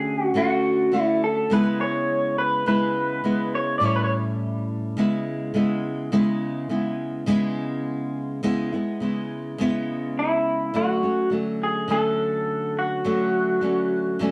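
A fingerpicked nylon-string guitar and a slightly broken-up electric guitar played through a small old amp open this mellow, wistful indie pop piece together, cut from a longer work. The nylon-string guitar carries the accompaniment throughout, its bright, classical tone sitting up front with lush chorus and a vibrato effect. The picked electric guitar states the melody in a lo-fi, compressed voice touched by chorus and slapback echo, falls away at 4.1 seconds, and returns at 10.2 seconds to close the passage. The harmony drifts from Dmaj7 through C#m7 and A7 before Dmaj7 comes back near the end, all over a gently swung sixteenth-note feel. Moderate spring reverb and studio ambience frame a dark, warm production.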